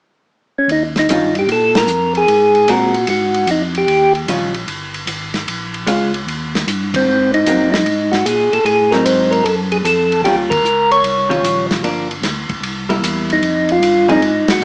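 Soul jazz organ trio at a swinging, bluesy and soulful lilt, with a mellow, round percussive tonewheel organ carrying the melody through a slow rotary speaker and plate reverb from 0.6 to 4.1 seconds, then returning at 7.0 seconds. Beneath it, a fat, lightly overdriven second organ plays the bass with vibrato, a dark, clean hollow-body electric guitar comps up front, and a dry, muffled drum kit with dark cymbals and a tight kick keeps time. The band hits shared accents along the way, all heard in a small, reverberant room with a lo-fi, small-speaker character.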